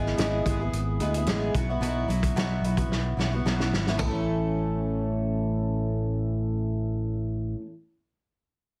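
A shimmering, octave-doubled twelve-string acoustic guitar and an up-front fingered electric bass open this short folk rock and heartland rock excerpt in A major at 110 BPM, with a loose indie drum kit joining at 0.1 seconds, its punchy kick, medium-tuned snare and gritty, saturated sound carrying a fill from 2.9 to 4.0 seconds. The harmony moves from E/G# to Bsus4 and then arrives on A at 4.0 seconds, and once the drums stop at 4.1 seconds, the full-bodied guitar and the bass carry the open-road, nostalgic mood. Light reverb and a heavily compressed, radio-like sound frame the whole piece.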